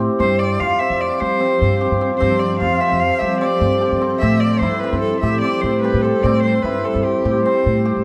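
Moving in a straight 5/4 at 149 BPM, this pensive, hypnotic stretch of contemporary chamber music is cut from a longer piece. A shimmering, hammered cimbalom sits up front playing arpeggios from the very start, while a woody, thumpy pizzicato upright bass carries the bass line beneath it. At 0.2 s a single bowed cello enters with a clear, smooth melody colored by vibrato. From 1.0 s a granular cloud pad holds blurred, detuned sustained chords in the background, bright and evolving with its own reverb. The harmony moves from G7sus4 to Am7 at 4.2 s, and a moderate concert hall reverb gives the ensemble a spacious setting.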